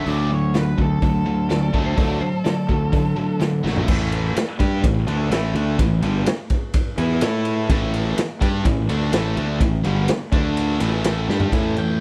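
Driving and confident, this 12-second classic rock excerpt at 126 BPM rides on a tight, bright distorted guitar riff, a growly fuzz fingered bass up front and a raw garage drum kit with a punchy kick and dark cymbals in a small pumping room, while a biting overdriven guitar riffs in the background until 3.9 s and returns at 7.7 s, a dark octave-fuzz lead with slapback echo sings a brief melody at the start, and an electric slide guitar played with fingerpicks adds a compressed second line between 1.5 and 3.6 s over the D chord before the harmony moves to A5, with drum fills marking the turns.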